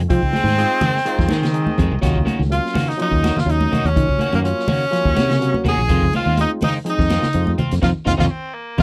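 A dry, close recording with a 1970s studio character and light reverb frames this funky, intense afrobeat excerpt in straight 4/4. An edgy, forceful tenor saxophone carries the melody up front with vibrato and scooped notes, while a bright trumpet sits distant and roomy in the background on a second line. A raspy, gritty baritone saxophone adds its own second line briefly from 0.6 seconds and again at 8.2 seconds. Underneath, a dark, round fingered electric bass sits up front, and a vintage acoustic drum kit with a punchy kick and rolled-off top plays hi-hat, kick and snare, joined by high-tuned, thin-skinned congas played with soft hands in the background. A barky tine electric piano supplies accompaniment in the background, a slightly broken-up, picked electric guitar with subtle chorus plays stabs, and a very quiet, clean electric guitar plays arpeggios. The harmony moves from Fm7 to Ebm7 and back to Fm7, and the band hits an accent at 7.8 seconds.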